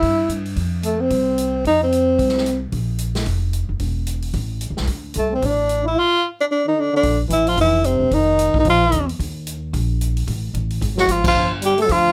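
A breathy tenor saxophone carries the melody up front, its soft attack, vibrato and scooped notes set over a mellow trombone second line in this smoky, late-night slice of small-group swing and bop at 222 BPM in 4/4. Woody pizzicato upright bass and a swinging kit with a punchy kick drive the whole clip, and the bass and drums play alone from 2.6 to 5.2 seconds before the horns return. Light reverb surrounds the group, the kit keeps a natural studio-room sound, and a band accent lands at 11.2 seconds near the close.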